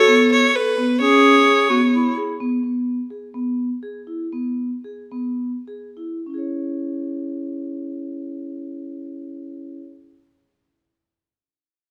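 Pulsing in an uneven 7/8 at 193-258 BPM in eighths, this urgent, hypnotic fragment of a contemporary chamber piece in C# minor opens with a rich, focused bowed violin carrying the melody with vibrato. A mellow, vintage-toned clarinet plays a classical second line beneath it, over ringing, metallic vibraphone arpeggios played with medium mallets and the motor off. After 2.4 seconds the vibraphone continues alone as the pace slows and the harmony moves from C#m7 through a rootless E/B toward C#m, all in a moderate recital hall reverb.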